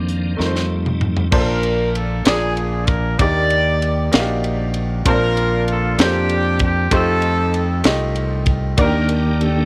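In a 6/8 metre with a straight feel, this slow gospel piece sounds hopeful and jubilant from its opening moments. A piping tonewheel organ, with key click, chorus vibrato and a fast rotary speaker, opens as the featured voice while a tight funk drum kit plays a fill underneath from 0.4 seconds, its high-tuned snare and tight kick sitting up front in a small room. At 1.3 seconds a warm horn section takes the melody, playing as a tight pop-style unit with vibrato and a touch of tape echo. Beneath it, a clear baby grand piano with short sustain plays accompaniment, and a bright, punchy fingered electric bass sits direct and forward in the low register. The harmony moves through rich major-seventh and dominant colours, and the organ's sustained chords return at 8.8 seconds. Light reverb and small room ambience frame this short cut from a longer piece.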